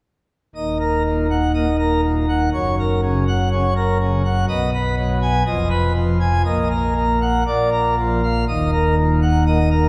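A pipe organ on full plenum carries this dramatic, majestic classical toccata, playing alone from 0.6 to 9.9 seconds in a passage cut from a longer piece. Its mixtures give the registration a brilliant, romantic voicing, and the sound reaches from Eb1 up to G#5. The organ sits up front, yet a wet church reverb with a 2.8-second decay surrounds it, so the room itself seems heard from further back. The harmony moves from a dark minor opening through shifting chords, including a half-diminished seventh, before a dominant pulls it back to the home minor chord. The effect is grand and dramatic, with the resonant space adding weight to every chord.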